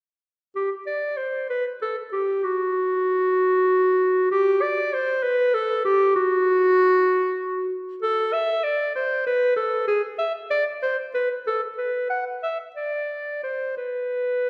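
A warm, smooth-topped solo clarinet sits up front in this flowing, introspective baroque-style classical fantasia, shaping its unaccompanied line with free rubato in 6/8 from 0.6 to 14.5 seconds, set in a wet recital-hall reverb heard from further back in the room, in a passage cut from a longer piece.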